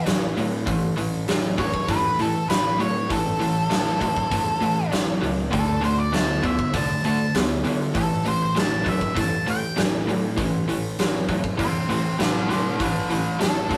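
A straight, driving 4/4 groove anchors this gritty blues rock and southern rock excerpt, cut from a longer piece. A huge arena drum kit sits up front in a big, natural-sounding room, its punchy kick, medium-tuned snare and hi-hat playing throughout. A dark, double-tracked overdriven electric guitar carries the picked riff in the low register, while an octave-fuzz lead guitar, also picked and up front, sings the melody above it with a distorted, fuzzy edge. Tucked in the background, a fingered electric bass adds a bright, growly overdriven fuzz to the bottom end. The harmony rests on A5, moves to D5 at 5.5 seconds and returns to A5 at 8.0 seconds, all within a rough rehearsal-room sound with saturated grit and moderate reverb.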